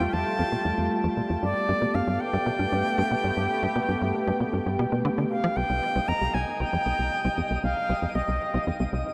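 Bathed in a huge, dark reverb with a long, cavernous tail, this brief excerpt of ambient space music feels mysterious and cosmic, set to a straight four-beat pulse. A punchy, up-front sequencer bass drives a riff built from sawtooth and square waves with ring modulation, analog chorus, 12-bit sampler grit and delay, and a filter sweep shapes it through the opening 5.6 seconds. Behind it, a detuned, resonant pad with a sub octave swells slowly through chorus on sustained chords moving from Fadd9 to Gadd9 and settling on C minor. A bright, reedy concert flute carries the melody up front with vibrato and a soft attack, its line trailed by delay. At 5.7 seconds a faint granular texture enters in the background, adding an octave-up shimmer of sparkling FM tones held in its own reverb.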